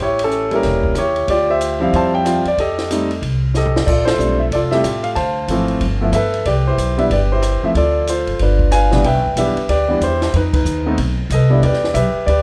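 A jazz piano trio swings at 186 BPM in C major, sophisticated and warm in mood, in a short section taken from a longer piece. The clear concert grand piano carries the melody up front, reaching from deep bass notes to clear upper lines, while the pizzicato upright bass supplies a woody, thumpy low end on gut strings. A compact cocktail drum kit sits lower in the mix, dry and natural with dark cymbals, a high-tuned snare and a punchy kick, moving between ride, hi-hat, rim clicks, toms and crash. The harmony runs through rich extended chords such as A7b9, Dm11 and Bbmaj13 before settling on Cmaj7 at 9.0 seconds, where a new section begins. A drum fill leads into a band accent at 4.0 seconds, and another accent lands at 10.5 seconds. Light reverb gives the trio a natural sense of space.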